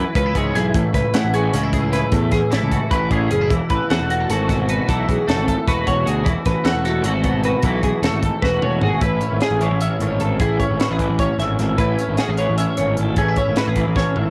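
Math rock with a midwest emo lilt, this wistful, bright fragment of a longer piece runs at 304 BPM counted in eighths, in a straight 7/8 in A major. Two clean, compressed twelve-string electric guitars ring throughout: one carries the chordal accompaniment through an ensemble chorus, while the other, twangier and up front, spins arpeggios higher up through an analog chorus, both softened by a cassette-tape sheen. Beneath them, a fuzzy, punchy picked bass with overdrive sits forward in the mix, giving the low end a gritty weight. A crisp fusion kit with an airy room sound, a high-tuned snare and a tight kick drives the odd meter on hi-hat, kick, snare and toms, adding a fill around 8.4 seconds and another at the close. The harmony moves from C#m7 through A69 to Esus4 before opening onto Amaj9 at 9.0 seconds, where a new section begins. The whole take carries the homespun ambience of a home recording on cassette.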